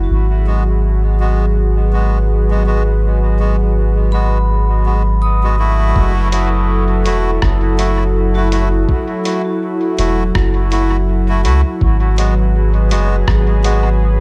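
Lightly reverberant with a digital ambience, this deep, spacious ambient dub excerpt in F# minor at 82 BPM, swung on the 16ths, sets a round, up-front sub bass under a smooth, detuned sawtooth pad with chorus, reedy, nasal melodica stabs through dub echo, and background vibraphone arpeggios, metallic and ringing with tape echo and a filter sweep, until at 6.0 s a muffled, thumpy kick enters, followed just after by a tape-warm lo-fi kit of hi-hat and rim click, with the vibraphone stopping at 11.8 s as the chords move from G#m7 to F#m7 and back.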